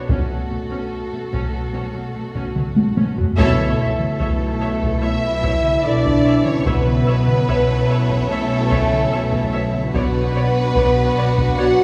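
Cinematic, epic orchestral film score at 73 BPM, dark and dramatic, cut from a longer piece, in which mellow French horns and heavy-stick taiko drums sit up front while warm, vibrato-rich violin sections carry the melody and a second line over expressive viola with portamento, smooth low cello and woody double bass, until a taiko fill at 2.6 seconds leads to a full band accent at 3.4 seconds, where clear, vintage trombones and a lush string section join the sustained chords, shifting from F#m/B to A/B before settling on Bmadd9 at 9.9 seconds, all bathed in wet concert-hall reverb.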